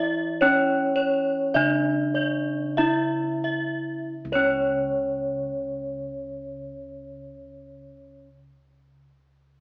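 A slow, straight 4/4 pulse between 42 and 57 BPM sets the pace for this hypnotic, stately gamelan excerpt, which eases into a slowdown over its first 4.1 seconds before a second section takes over. Up front, a bronze metallophone struck with horn mallets carries the melody between C#4 and E4 in a dark, smooth, ringing tone. A second metallophone, also up front, spins arpeggios higher up between C#5 and E5, its bright, airy sound shimmering with the beats of its paired tuning. Bossed gongs played with padded beaters also play arpeggios in that same range in a soft, mellow, round voice, while another set of gongs sits in the background with a bass line spanning C#2 to E4. The whole ensemble sounds through a small speaker inside a reverberant recital hall, and all parts fall away by about 8.3 seconds.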